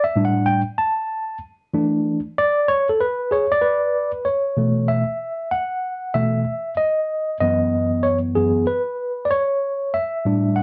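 A worn, slightly out-of-tune tine electric piano plays alone and up front for the whole 10.6-second excerpt, lightly overdriven and heard through its built-in speakers. This is a smoky, nocturnal hip hop piece in B minor at 95 BPM in 4/4, with a swung sixteenth-note feel. The piano spans F#2 to A5, moving through suspended chords: A7sus4 and E7sus4 first, then a new passage from 4.3 seconds that brings B9sus4 and F#7sus4 before returning to A7sus4 at 9.3 seconds. A wet studio reverb with a short decay surrounds the keys, and the overall production is dark and warm. Cut from a longer piece, it feels like a late-night moment caught in the middle.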